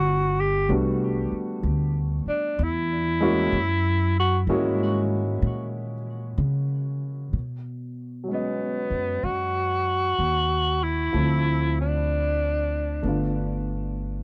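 A dry, close studio sound in a 1970s style frames this tender, late-night jazz ballad, a fragment cut from a longer piece that moves at 63 BPM in 4/4 with a swung eighth-note feel. Up front, a breathy tenor saxophone carries the melody in a whispered, intimate subtone, with soft attacks, scooped notes, vibrato and a touch of tape echo giving it a vintage glow. An upright bass plays from the opening moment, its gut strings plucked for a woody, thumpy tone. A grand piano joins at 0.7 seconds with short-sustained, warm accompaniment. The saxophone takes the featured solo through the first 7.3 seconds, and the harmony drifts from Gmaj7 through B6 and Dm7 before settling on G9 as the saxophone falls away at 13.6 seconds.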